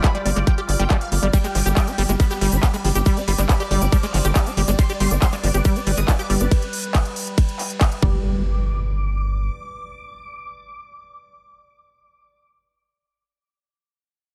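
Hypnotic and alien, this psychedelic trance excerpt at 139 BPM opens on a drop where an up-front, tight electronic kick and an overdriven techno kit with smooth hats, handclaps and ride drive beneath a punchy, tight sequencer bass, a squelchy, resonant liquid acid bass riff with dub echo, a detuned supersaw stab melody with phaser and delay, and an evolving overtone-sweeping drone in the background, with a grainy egg shaker and a very quiet, metallic wobble bass passing briefly before the beat drops out at 8.1 seconds. The stab rings on, joined by the sequencer bass until 9.5 seconds, over a distant impact that lasts until 12.9 seconds.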